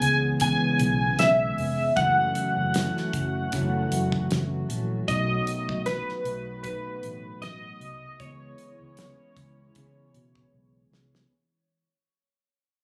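Hazy and lonely, this indie bedroom pop excerpt drifts along at an unhurried, lightly swung pace while fading out from its opening moments, moving through minor seventh chords toward a dominant seventh before settling back. Up front, warbling lo-fi synth keys carry the melody with a detuned, nostalgic tone bathed in lush chorus and tape echo, stopping at 10.5 seconds. A mellow, dark electric guitar with subtle chorus and vibrato, a hollow, flute-like pad in the background, a round, punchy foam-muted bass and a dry, damped 70s kit with a fat snare sit beneath them, the drums closing on a fill from 10.5 to 11.3 seconds, all heard through the compressed, roomy sound of a phone recording.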